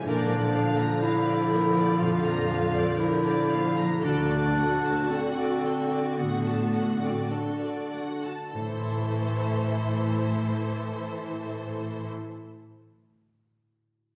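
A present, warm solo clarinet carries a second line in this longing, sorrowful cinematic orchestral cue in a rubato 4/4 that slows over its first 8.5 seconds, shared with clear, intense violins with vibrato, over smooth, lush violas held up front, focused cellos on the bass line, and mellow, thumb-plucked harp arpeggios ringing in the background until 12.4 seconds, all set back in a wet scoring-stage reverb as the harmony moves from Bb through D to Am.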